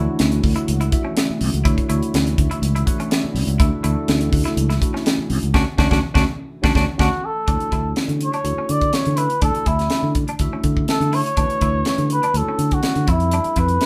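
A cup-muted trumpet takes the melody at 7.0 seconds, veiled and breathy with vibrato and scooped notes, sitting up front over a bright, funky electric jazz fusion groove in D major at 123 BPM. Beneath it, a crisp, airy drum kit with a high-tuned snare and tight kick joins a growly fingered bass, while a clean tine electric piano with phaser adds fills and a compressed semi-hollow guitar plays stabs. A lush, warbling detuned pad with chorus holds sustained chords in the background until 7.4 seconds, and the band hits an accent before the harmony moves from Dmaj9 to Fmaj9 near the close of this excerpt from a longer piece.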